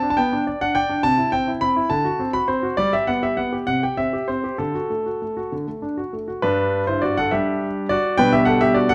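A solo concert grand piano opens this graceful, cheerful sonatina in the classical-period style, heard in 6/8 with a flexible, rubato feel. The instrument sounds clear and polished, placed up front and intimate, with deep bass, long sustain and audible action noise picked up by close, detailed microphones. Its range stretches from G2 up to B5, and the harmony moves through familiar turns such as C, D7 and G before settling back toward G/B. A new section begins at 6.4 seconds and carries the music on until the recording cuts off at 8.9 seconds, a short portion taken from a longer piece. A moderate recital hall reverb with a 1.4-second decay gives the piano a natural sense of space around its present, detailed tone.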